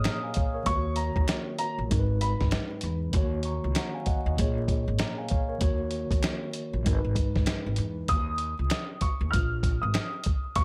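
Boom-bap hip-hop with a dark, gritty mood, swung sixteenths and a layer of vinyl crackle over studio reverb, cut from a longer piece. The sampler-style drum kit sits up front, compressed and tape-warmed, with a thumpy kick, medium-tuned snare and hi-hat that sound re-recorded in a large room. A pizzicato upright bass on steel strings, woody, bright and growly, holds the low end up front throughout, beneath a very quiet finger snap caught in a small room. A mellow, clean tine electric piano plays accompaniment through its built-in speakers until 8.1 seconds, moving through minor seventh chords before the harmony turns to suspended voicings. A worn, slightly detuned upright piano carries the melody high in its register, heard briefly at the start and returning at 8.1 seconds, filtered and touched with digital delay.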